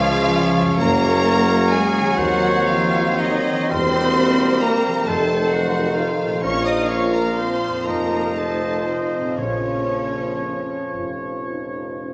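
A close, focused violin section carries the vibrato-rich melody through this solemn, melancholic slow romantic orchestral movement in Bb minor, moving in a rubato 6/8 at about 37-46 dotted-quarter beats per minute, with oboe, airy flute, dark clarinet and a distant, intense second violin section weaving second lines, mellow bassoon and a lush viola section with portamento accompanying, soft French horns and bright trombones holding sustained chords beneath bright trumpet stabs, a ringing harp playing arpeggios, rich cellos, double basses and tuba supplying the bass, and timpani entering at 9.4 s, all set in a reverberant recital hall.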